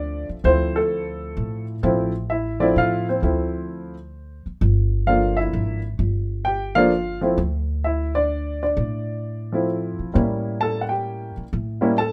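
Light reverb frames this smoky, moody swung jazz waltz excerpt, where an intimate, up-front baby grand piano with audible action noise and short sustain carries the melody over a woody, thumpy pizzicato upright bass, both playing throughout as the minor-key harmony moves from Dm7 toward a tense A7b9 at 10.1 seconds.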